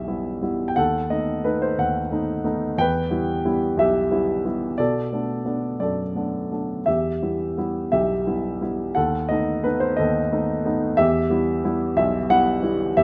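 A grand piano sits up front in a moderate concert hall reverb, its tone smooth and vintage with short sustain, and the room's 2.2-second decay gives each phrase a soft halo. This is lyrical classical solo piano in E minor, played in 6/8 at about 59 dotted-quarter beats per minute with a free, rubato feel and uneven beats that let the line breathe. The mood is melancholic and wistful. The piano alone carries the whole 13 seconds, ranging from a deep B1 up to G5. The harmony circles between E minor and B7 over D sharp, with a turn to B minor seventh at 4.8 seconds, then back through E minor and B7 over D sharp before settling on E minor at 11.0 seconds. Cut from a longer piece, this passage feels like a single tender, searching statement.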